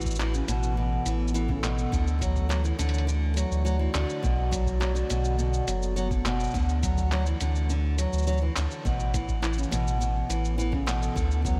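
A warbling, nostalgic pad of detuned square, triangle and sawtooth tones opens this folktronica excerpt at 0.0 seconds, its sustained chords blurred by chorus, phaser and a built-in reverb, while a fingerpicked nylon-string guitar plays bright, up-front arpeggios through a delay. A deep, round sine sub bass with tube saturation sits beneath them, and a lo-fi sampler-style kit of handclaps, hi-hat and shaker adds a muffled, pitched-down patter. An electronic kick joins at 0.1 seconds with a thumpy, compressed, tape-softened thud. At 104 BPM in a straight 4/4 and D major, the harmony moves through Aadd9, Dadd9, Bm and back to Dadd9 and Aadd9, giving the whole a warm, hopeful glow. Light reverb sets the parts in a gentle space, and the bass stands out as the most prominent element in the mix.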